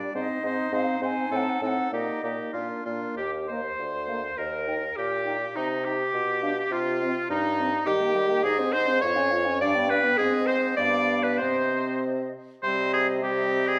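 Heard through the wet acoustic of a recital hall, this brief excerpt from a quick classical-period movement for wind quintet moves at roughly 94-106 BPM in 2/4 with a rubato feel, turning from Eb major toward a dramatic, stormy C minor at 7.9 s. An airy, distant silver flute carries the melody from the background with soft attacks and vibrato, while an up-front oboe with light vibrato shapes the second line alongside the bright clarinet and a roomy, faraway French horn in the accompaniment. A mellow bassoon anchors the bass, and a G7 chord near the end pulls the harmony back toward C minor.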